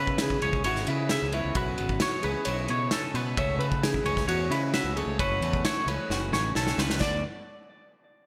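A bright digital production in the 1980s style, bathed in a moderate plate reverb, frames this short, wistful cut of math rock and midwest emo at 132 BPM in D lydian, moving from C#m7 to A6/C# and landing on D6 at 7.0 seconds. A dark, fingered electric guitar carries the melody through lush chorus and delay, while a clean, twangy guitar picks arpeggios above it with subtle chorus and a compressed twelve-string guitar plays picked accompaniment in the background. Beneath them, a punchy, overdriven fingered bass growls, and a loose indie kit sits up front in a pumping small room, with dark cymbals, a tight kick and gated reverb, rolling into a fill at 6.1 seconds.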